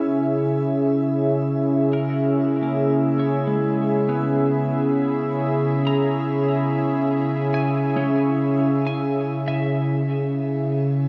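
A slow, straight 72 BPM pulse in 3/4 carries this reflective, spacious ambient excerpt in C# dorian, cut from a longer piece. Up front, a detuned sawtooth analog pad holds smooth, mellow chords from C#3 to E5, its slow attack and long release softened by chorus and shimmer reverb. A bright, twangy twelve-string electric guitar picks clean, compressed arpeggios in a higher register, fading in over the first 10.0 seconds through spring reverb, diffuse ambient delay and shimmer. Beneath them, a very quiet hand-pumped harmonium sustains a reedy, nasal, breathing drone on C#3. The harmony rests on C#m7 before settling onto plain C#m at 10.0 seconds. A wet concert hall reverb and dark, warm production wrap the sound in a soft, spacious haze.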